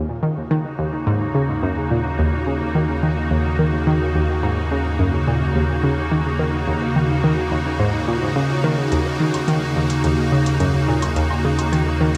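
Ambient, sequencer-driven space music in Eb minor, moving at 107 BPM in a straight 4/4 with a cosmic, mysterious air, this short section is cut from a longer piece and rests on a single Ebm7 chord throughout. An analog pluck drives it from the first moment with a riff between Eb2 and Eb3, its round sawtooth and square tones edged with a noise layer, ring modulation and a filter sweep, then thickened by chorus and analog delay. A deep sine sub bass holds a mellow Eb2 beneath it, while an evolving wavetable pad enters at 0.4 seconds with sustained, morphing chords sitting up front, its slow attack and long release colored by ensemble chorus and shimmer reverb. Electronic hi-hat and woodblock arrive late, at 8.9 seconds, tucked in the background with metallic hats and their own analog delay. A huge, wet ambient reverb with an 8.7-second decay surrounds the whole mix, giving it a vast, drifting sense of space.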